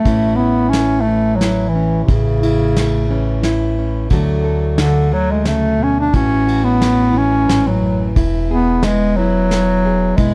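A mellow bass clarinet sits up front and carries the melody in a smooth, classical style, its soft attack and rounded top giving this excerpt from a longer acoustic folk piece a peaceful, gentle character. It plays a solo through to 8.2 seconds, when the music moves into a new section. Beneath it, a fingerpicked, plugged-in steel-string jumbo guitar with fresh strings supplies full-bodied accompaniment, while a pizzicato upright bass on gut strings adds a woody, thumpy low end. A soft brush kit of tight kick, medium-tuned snare and shadowy ride cymbal keeps an unhurried waltz-time pulse with a small-room feel. The harmony moves from A to D and A6 before arriving on E, and the production is dark and warm with little reverb.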